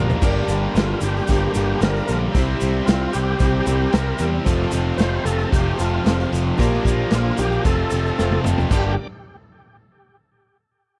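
A round, direct electric bass sits up front in this swaggering, gritty classic rock excerpt at 113 BPM in G dorian, under a thick, key-clicking overdriven tonewheel organ melody through slow rotary speaker, chorus vibrato and tape echo, a pair of bright, double-tracked distorted electric guitar riffs in the background, a punchy, saturated garage drum kit with fills at 0.0 and 8.2 seconds, a very quiet, shouting second tonewheel organ holding chords, a faint woody upright piano, a boxy picked acoustic archtop guitar with finger squeak and a grainy tube shaker, the whole mix dry and close in a 1970s studio style over a Gm, C, F, Bb6 progression.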